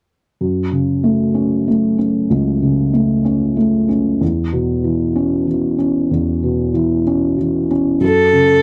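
A dry, close recording in a 1970s studio style, set in a small booth with a moderate, short ambience, frames this melancholic, aching pop fragment cut from a longer piece. In 6/8 at a slow 63 beats per minute with a straight feel, it sits in F# minor, moving from F#m to C#m7/E and back to F#m. A felt-muted upright piano carries the accompaniment from 0.4 seconds, its soft, boxy tone dark and intimate, with thick felt dulling every note in the low and middle register. The piano sits up front, mellow and close. Only at 8.1 seconds does a single bowed violin arrive with the melody, holding a rich, focused A4 with vibrato, before the fragment cuts off at 8.6 seconds.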